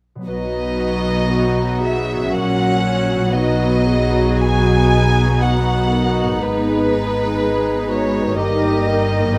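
In a rubato 3/4 at 59 BPM, this lyrical, serene excerpt from a slow romantic orchestral movement in B major opens with ringing, thumb-plucked harp arpeggios at 0.2 seconds. An intimate chamber violin section then carries a sul tasto melody with light vibrato, while a present clarinet and a pure, floating symphonic violin section weave second lines. Violas give soft-attack accompaniment and mellow French horns hold sustained chords. A rich cello section and a chamber double bass section anchor the bass through chords moving from B to F#/A#, back to B, then G#m and D#/G. It is all captured up close in a moderate scoring-stage reverb.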